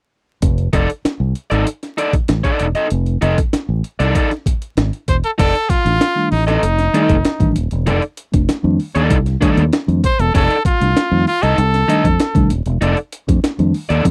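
Funk at 97 BPM in F mixolydian, this short cut from a longer piece has a strutting, funky swagger and a straight 4/4 feel. A compressed, gritty breakbeat-style drum kit, pitched up with a thumpy kick, high-tuned snare, hi-hat and crash, sits up front alongside a punchy fingered electric bass from 0.4 seconds, with a crunchy overdriven picked guitar joining at 0.7 seconds over an F6 chord. At 5.4 seconds the harmony shifts to F13, and a brilliant solo trumpet takes the melody from 5.1 seconds, its pop-style lines marked by vibrato and scooped notes. A mellow, clean tine electric piano adds stabs from 5.8 seconds, sitting a little further back than the other parts. The sound is dry and close, in the manner of a 1970s studio, with little reverb and a layer of vinyl crackle.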